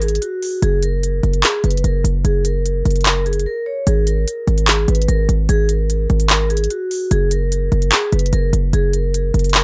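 Dark and menacing, this half-time trap hip hop cut in G# minor at 148 BPM sets a metallic, ringing vibraphone melody, played with medium mallets and its motor off, in a boxy small room with tape echo over an F# to G#sus2 progression. Up front, a punchy, heavy sine 808 bass with a noise layer and a fast attack that decays drives the low end, while the electronic trap kit brings crisp hi-hats and handclaps with a tape-warm edge. The mix is dry and dark-topped, and a brief break at 3.5 seconds leads into the second section at 3.9 seconds.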